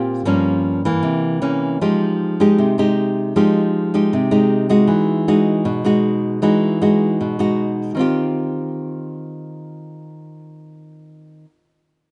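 A solo nylon-string guitar, fingerpicked and up front with a bright, full-bodied classical tone and finger squeak, carries this sunny, breezy bossa nova excerpt in Eb major at 156 BPM, moving through jazzy chords from Gm7b5 and C7b9 to Fm9 and Emaj9 before settling on Eb69 at 8.0 seconds, all within light reverb and a dark production that rolls off the top end.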